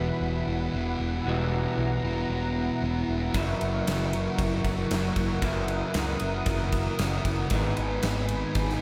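A dreamy, reverb-soaked mix with a moderate plate and studio ambience frames this hazy shoegaze and dream pop excerpt at 115 BPM in 4/4, where a thick, up-front fuzz guitar riff and a slightly broken-up, lo-fi guitar riff from a small old amp, trailed by reverse reverb, ride over a growling, overdriven picked bass and a smooth, detuned sawtooth analog pad with chorus that sustains chords from Emadd9 through F#7 to G#m, while a polished, gated 80s drum kit with tight kick, medium-tuned snare and bright ride cymbal enters up front at 3.3 s in an airy stone room.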